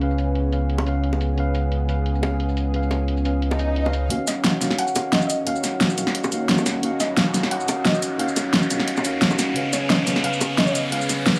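A soulful, melancholic liquid drum and bass excerpt in Eb minor at 176 BPM opens with a mellow tine electric piano through tape echo, a lush detuned unison pad under a filter sweep, a smooth gliding sawtooth synth bass with portamento, and an overdriven, up-front electronic kit of fat snare, warm hats and shaker; tight, high-tuned bongos join at 0.8 s, a swell arrives at 3.5 s, and from 4.3 s a soft, round, chorused pluck carries the melody through dub echo over a building riser, set in a light reverb.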